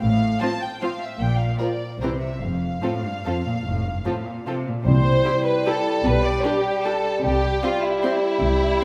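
A wet, reverberant scoring-stage sound frames this elegant, sweeping orchestral ballroom waltz in 3/4 at 150 BPM with uneven, rubato beats, where a dark, intimate violin section carries the melody over a lush, expressive second violin line, a smooth viola accompaniment and a rich, bowed cello and double bass foundation in F major, before the music turns to C major at 4.9 s with a clear clarinet line, a mellow, roomy bassoon and a brief timpani stroke joining in.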